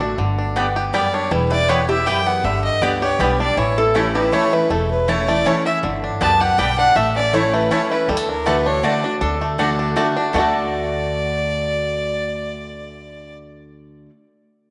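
Bluegrass in D major at 160 BPM, a joyful, lively tune in 3/4 with a light swing, cut from a longer piece. A biting, earthy fiddle carries the melody up front alongside a twangy, fingerpicked banjo, while a full-bodied jumbo acoustic guitar and a thumpy upright bass drive the accompaniment, and a mandolin adds background stabs from 0.6 seconds. A nasal, metallic slide resonator guitar weaves a second line in the background, dropping out at 4.8 seconds and returning at 9.2 seconds, all bathed in a lush echo-chamber reverb.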